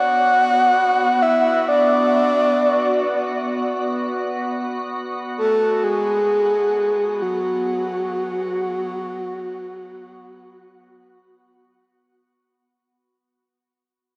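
Bathed in a huge, wet reverb with an eight-second tail, this reflective, melancholic ambient fragment in free time pairs a breathy, flute-like synth lead, soft and up front with chorus, vibrato, shimmer reverb and delay, singing between F#4 and F#5, over a calm organ-like drone sustained beneath it with ensemble chorus and phaser on a D/B chord, the whole piece fading out from 2.9 seconds until the lead ends at 11.8 seconds and the drone at 12.9 seconds.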